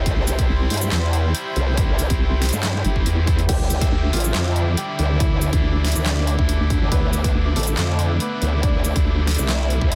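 Dry, dense and heavily limited, this cut from a longer heavy wobble dubstep track hits hard and aggressive at 140 BPM in a half-time 4/4 feel, tuned slightly low to A4 = 438 Hz. Two up-front basses dominate: a growling, saturated growl bass with chorus and overdrive, joined at 0.5 seconds by a nasal, resonant vowel-sweep wobble bass run through a formant filter. A punchy, tape-tinged electronic kick and an overdriven dubstep kit with a deep snare, bright hats, crash, handclaps and shaker drive the groove. A high-gain electric guitar stabs in with distortion and tape echo, while a lush, detuned sawtooth unison pad holds sustained chords in the background, pumping with sidechain and chorus. A very quiet granular cloud pad adds a blurred, evolving shimmer beneath. At 3.5 seconds a warm concert grand piano with deep bass and tape echo enters with a melody in the background as the harmony moves from C to Dmadd9.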